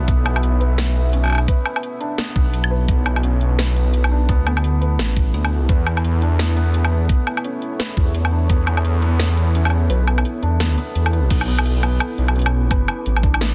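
Tense and heavy, this half-time drum and bass excerpt in B minor runs at 171 BPM with a swung sixteenth feel, moving from Bm to E7sus4 and back. A deep, rumbling detuned saw bass sits up front beside a knocking electronic kick, which drops away at 8.6 seconds and returns at 11.3, while the drum kit adds a cracking snare, metallic hats, crash and woodblock with a tape-warm, small-room character. A felt-muted upright piano plays soft, mellow arpeggios through dub echo, and a moody ambient pad holds slow-attack chords in the background with chorus, reverb and sidechain pumping, inside a dense, heavily limited master.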